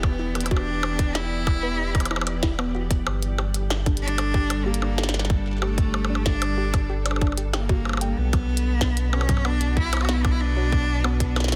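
A tight, up-front electronic kick and a glitchy kit of clicky hats, percussion blips, toms and a tiny snare with soft clipping set a straight, steady pulse in this eerie, melancholic IDM excerpt, while a round sine sub bass sits deep beneath. A silky, warbling string machine holds slow-blooming chords through Em7, Gmadd9 and Bm, and a lo-fi, detuned pluck flickers arpeggios in the background from 0.2 seconds, colored by cassette tape wear and tape echo. Meanwhile, a close, bowed cello sings a focused, vibrato-rich melody trailed by digital delay, in a dry, dense and heavily limited mix.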